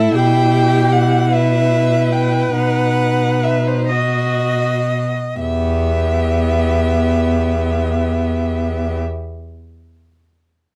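Solemn and elegiac, this excerpt from a slow romantic string quartet movement unfolds in E minor at a grave pace of roughly 37 to 53 beats per minute, counted in dotted quarters within 12/8 and shaped with free rubato. The first violin carries the melody up front, its rich, expressive tone colored by vibrato and portamento as it moves between C5 and G5. A second violin, also bowed with vibrato and portamento but set farther back, traces a softer inner line beneath it. The viola supplies a clear, focused accompaniment, while the cello anchors the bass with a smooth, even sound from E2 to B2, standing forward alongside the melody. The opening passage slows as the harmony moves from E minor over B to B major, before a new section begins at 5.4 seconds back on E minor. Light reverb and a dark production give the quartet an intimate, mournful glow.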